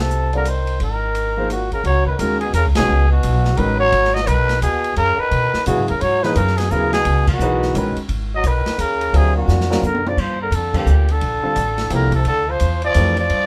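Cool and searching, this modal jazz waltz at 173 BPM swings in 3/4 and settles into G dorian at 10.2 seconds, with a raspy, growling trumpet carrying the melody over a veiled cup-muted trombone, a woody, thumpy upright bass, a warm grand piano and a dark, smooth acoustic drum kit, while band accents punctuate the groove and a drum fill from 9.5 seconds marks the turn to a Gm9 chord in a moderate club reverb.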